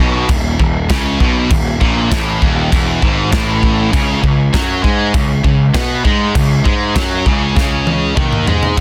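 This short heavy metal passage, cut from a longer piece, opens at 0.0 seconds with two bright, picked high-gain electric guitars playing a riff, one of them with a scooped tone, over a growly, fuzz-drenched picked electric bass that sits up front. An acoustic studio drum kit joins at 0.3 seconds with crash cymbal, hi-hat, punchy kick, medium-tuned snare and toms, captured in a small, airy room with a polished, forward sound. At 99 BPM in a straight 4/4, the mood is dark and aggressive, with the harmony moving from Eb5 to Db5 at 3.9 seconds. A drum fill arrives at 7.6 seconds and carries the passage to its cut at 8.8 seconds. The mix is dry and dense, with a heavily limited modern master.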